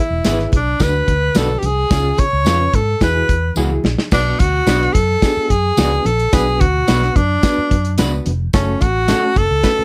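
A breathy tenor saxophone carries the melody from the first moment, its scooped, vibrato-laden notes up front, over a barky, reedy electric piano with light overdrive and fast tremolo in this passionate, driving 1960s-style soul excerpt. Almost at once a dark, round, foam-muted electric bass with tube saturation and a small-room soul drum kit with dusky cymbals and a tight kick join in. Very quiet, close and dry low-tuned congas add to the groove, while a jingly tambourine and a slightly broken-up electric guitar playing stabs from 0.3 seconds sit in the background, and a drum fill at 3.6 seconds leads into a new section at 4.1 seconds, bathed in light reverb.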